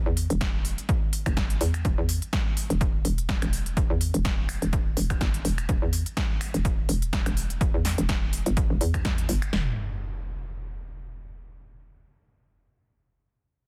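A hollow, knocking FM bass leads this aggressive, gritty bass house cut, bouncing up front with a fast attack and a mellow decay, pushed by overdrive and pumping against the sidechain in the low register. Around it, two layers of a big-room dance drum kit hit hard: one carries a punchy kick, snare and toms, and the other adds finger snaps, crisp hi-hats and another snare underneath. Both drum layers are overdriven and carry the air of a large room, giving the electronic kit a brutal, crunchy weight, while the groove in four swings lightly on the sixteenths. At 9.5 seconds an electronic impact lands up front, and once the drums drop away and the bass ends at 9.8 seconds, it rings out alone to the end. The mix stays dry and dense, with a heavily limited modern master, and the passage is cut from a longer track.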